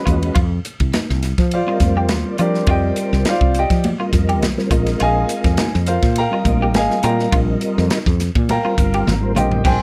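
A light reverb surrounds this slick, driving electric jazz fusion excerpt at 103 BPM in 4/4, with a sixteenth-note swing and harmony moving from F13sus4 to Bb13sus4 at 4.7 seconds. A boxy baby grand piano sits up front and takes the solo lead with slapback echo, over a soft, flute-like tonewheel organ turning through a slow rotary speaker with chorus vibrato, bright, compressed clean electric guitar stabs in the background, and a dark, round fretless bass placed up front. An airy fusion drum kit with a punchy kick and a medium-tuned snare plays alongside ringing, high-tuned congas struck with hard hands, and the drums finish on a fill at 9.1 seconds.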